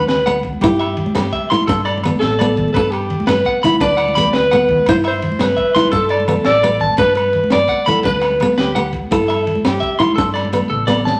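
A clear alto saxophone carries the melody up front from the first moment, joined at once by a picked steel-string acoustic guitar, a clean electric guitar playing arpeggios, and congas, giving this highlife guitar-band fragment a carefree, sunny mood in 12/8. The saxophone is played in a jazz style, with light vibrato, a soft attack and scooped notes. The acoustic guitar has a warm, auditorium-like body, while the electric guitar sits higher and rings through spring reverb. Beneath them, a round, amped fingered bass and a smooth, dark breakbeat kit with a punchy kick, high-tuned snare and rolled-off top arrive almost immediately, and ringing agogo bells and thick-skinned, soft-handed congas stay in the background. The harmony circles through Gmaj7, C/G and Dsus4/G, all set in a large, wet studio reverb. The saxophone stops at 10.0 seconds, and a drum fill closes the passage from 10.7 seconds.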